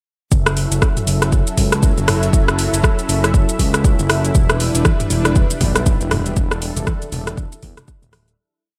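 A four-on-the-floor electronic kick at 119 BPM drives this hypnotic, spiritual afro house piece in E dorian, with swung sixteenths from a deep house kit of metallic hats, shaker, rim click and low toms, a saturated, gliding synth bass in a dotted rhythm, and a detuned, chorused analog pad holding F#m7 and then Em7, while very quiet, low-tuned congas join at 4.4 s ahead of a fade-out from 5.7 s under light reverb.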